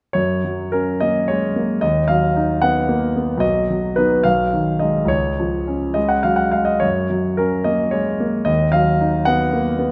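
Classical romantic character piece for solo piano in F# major, hopeful and passionate, moving with rubato at 68-78 BPM in 6/8, where a clear concert grand with deep bass and a polished, up-front tone, its notes short in sustain, spans B1 to F#5 through chords of F#, B, G#m and C# before returning to F# around 6.8 seconds, all set in a moderate recital hall reverb in this fragment cut from a longer piece.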